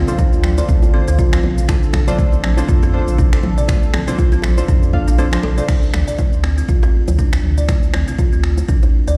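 Afro house at 120 BPM in D minor, hypnotic and earthy, with a swung 16th-note groove that moves from Dm7 to Bbmaj7 before settling on D7(no3) in the later stretch of this cut from a longer piece. A punchy, overdriven electronic kick sits up front over a deep, round sine sub bass, while an overdriven deep house kit adds cabasa, crash cymbal, finger snaps and toms, and bright, high-tuned congas and tight, dry bongos sit far back in the mix. A woody, buzzing kalimba plucks arpeggios throughout; a detuned sawtooth pad and chorused pulse-wave key stabs with dub echo pump under sidechain until around 5.7 seconds, just after the kick drops out from 5.2 seconds, and a large studio reverb makes it all sound like a big system in a bare room.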